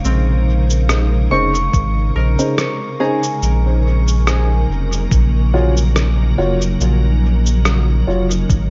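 Ambient dub at 71 BPM with a light 16th-note swing, spacious and meditative, where a round, deep sine sub bass sits up front under a calm, full-bodied organ-like pad with ensemble chorus and built-in reverb, a ringing fingerpicked Celtic harp arpeggiates through dub echo until 6.5 s, a dark, woody upright piano adds echoed stabs from 1.3 s, and a muffled, pitched-down shaker and rim click with a thumpy background kick entering at 1.7 s drift over Bbm11 and Ebm7 chords, all coloured by vinyl crackle in this excerpt from a longer piece.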